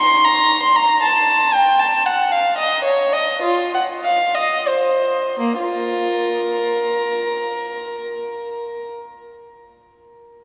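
A lone bowed violin with a reedy, gut-string tone and light vibrato sits up front in this grave, solemn baroque-style suite movement for unaccompanied violin, played in a period style in Bb minor and 3/4 at a rubato 80-120 BPM with A4 = 443 Hz, slowing from 1.0 to 5.4 seconds before a new section begins and ringing into a long cathedral reverb, in a fragment cut from a longer piece.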